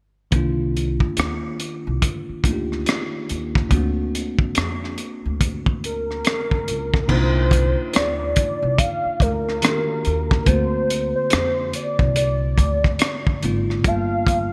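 Late-night and smooth, this excerpt of swung neo-soul R&B at 71 BPM sets a bell-like tine electric piano and a woody pizzicato upright bass over a crunchy, gritty breakbeat kit of dark cymbals, tight kick, hi-hat and rim click treated with gated reverb, with a velvety, detuned synth lead carrying the melody from 5.9 seconds through Cm11, D7alt and Gm9 harmonies in a bright 1980s-style digital production.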